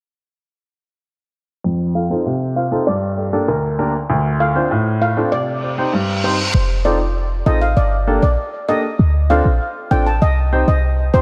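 A deep, boomy 808-style bass arrives at 6.5 seconds and anchors this bouncy yet tough dancehall excerpt. Its clean sine tone hits with a fast attack before decaying, and it sits up front in the mix. Before it enters, a worn baby grand piano carries the accompaniment from 1.6 seconds with long sustain, cycling through F7, Gmadd9, Dm7 and Cm while a filter sweep runs through the opening stretch. A steel pan played with soft rubber sticks takes the lead melody, its metallic, shimmering voice kept mellow by a low-pass filter and trailed by a diffuse ambient delay. An electronic reverse cymbal leads into the bass entrance and marks the shift to the second section, and a lush hall reverb soaks the mix in a dreamy haze.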